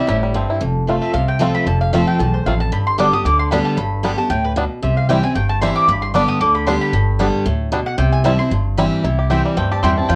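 Heard through light reverb and worn, warbling old cassette tape with a drifting pitch, this lively, rustic bluegrass excerpt swings along at 228 BPM in C major. A twangy banjo, played with fingerpicks, carries the melody over bright, full-bodied picked acoustic guitar sitting up front with audible finger squeak, pizzicato upright bass with a dark, woody tone, and a picked double-string mandolin punching out stabs in a solo spot through 9.0 seconds. A second, mellow mandolin takes up a short melodic line at 9.6 seconds as the passage moves into a new section.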